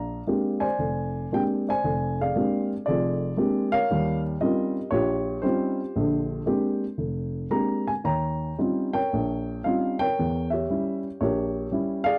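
A dark baby grand piano opens at once and carries this solo jazz fragment, cut from a longer piece, through its full 12.2 seconds. The mood is relaxed and warm, with a loose swing on the eighth notes in 4/4 that stretches freely in rubato. The player moves through rich Bb13 and Eb13 harmonies, cycling through that pair once more before settling on an Edim7 at 10.2 seconds, and the part spans from F1 up to Bb5. The instrument sounds mellow and intimate, with a short sustain and the clatter of its action audible. Recorded close and dry in a small room, in the manner of a 1970s studio session, the piano sits up front with a natural, unvarnished presence, tuned slightly high to A4 = 442 Hz.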